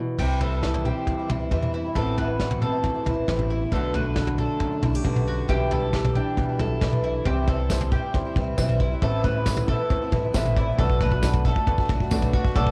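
Bittersweet and yearning, this indie folk excerpt at 136 BPM builds steadily over a cassette-worn home recording, with a fingerpicked steel-string acoustic guitar up front until 9.0 seconds, its finger squeaks caught in plate reverb, while a boxy, shimmering octave-doubled twelve-string, a round mandolin playing arpeggios, thumpy pizzicato upright bass and a dark, smooth brush kit with a drum fill carry the chords from C through Amadd9, Bm7 and Em7/B. A slightly detuned, woody upright piano enters in the background at 7.3 seconds and adds a short fill at 10.1 seconds, and a jingly, saturated tambourine joins at 7.7 seconds.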